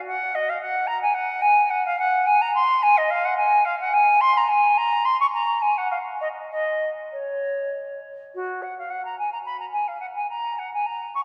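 Bathed in a long cathedral reverb, this brief passage from a serene, flowing baroque-style classical fantasia features a solo silver concert flute playing from 0.1 to 11.2 seconds in a rubato triple metre, its pure, expressive tone carried by vibrato and crisp attacks.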